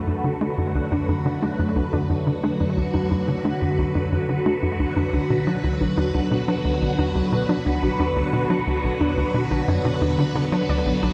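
Ambient, sequencer-driven space music in D major at 89 BPM, this cosmic, luminous excerpt moves from D to B minor at 5.1 seconds. A tight, punchy, nasal sequencer bass drives a riff up front with a filter sweep, while a swirling, vintage string machine holds bright sustained chords through ensemble chorus and phaser. A warbling, lo-fi pluck sits in the background playing mellow arpeggios with chorus and delay, all bathed in a vast cathedral reverb and the dusty haze of cassette tape.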